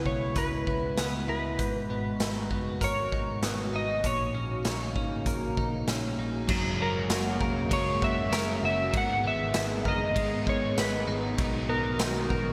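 A dark, slightly broken-up electric slide guitar carries the melody through analog chorus and digital delay in this ethereal, floating dream pop fragment at 98 BPM, over a hollow, flute-like pad, delayed arpeggios from a scooped clean electric guitar, a round, foam-muted picked bass and a gritty, up-front garage drum kit with gated reverb and tambourine, while an overdriven electric guitar with harmonic tremolo slips into the background at 6.5 s, the whole mix bathed in a lush hall and bright 1980s-style digital production.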